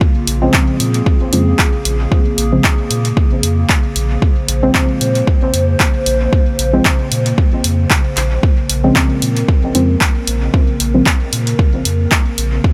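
Dub techno at 114 BPM in Bb minor, this short cut from a longer piece settles into a deep, meditative groove over a single Bbm7 chord with a light 16th-note swing. An electronic kick drum sits up front from the first second, layered and deep with the close feel of a small room, while a deep house kit of handclaps and hi-hat joins at 0.3 seconds, its hits trailing off into dub echo. A pure sine sub bass, clean and smooth, holds the low end between Bb1 and Bb2 and pumps against the kick. Above it, a warbly, tape-like pad sustains dark, detuned chords with a slow attack and long release, its lo-fi, nostalgic haze thickened by chorus and its own reverb. From 0.4 to 11.1 seconds a soft, nasal chord stab plucks and decays through chorus, phaser, 12-bit sampler grit and dub echo, adding a full-bodied, gritty texture to the mix.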